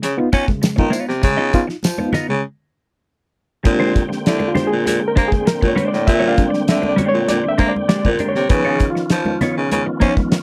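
Playful and funky, this short cut from a longer piece moves at 99 BPM in a straight 4/4, rooted in Bb mixolydian and opening on a Db9 chord. A damped 70s drum kit sits up front with a fat snare, tight kick and hi-hat, while a raspy baritone saxophone carries the bass line with gritty, scooped notes and vibrato. A dark, clean, picked electric guitar adds compressed accompaniment through a phaser, and a barky reed electric piano, lightly overdriven with fast tremolo, punches in stabs from 0.2 seconds. Ringing congas and a jingly tambourine sit in the background, the tambourine dropping out by 2.3 seconds as a break arrives. At 3.7 seconds the harmony shifts to Bb13, the reed electric piano takes a solo, and a tonewheel organ enters beneath it with sustained chords, key click and a fast rotary speaker, before the chords return to Db9 at 8.5 seconds. The dry, close 1970s-style studio sound keeps every part crisp and immediate.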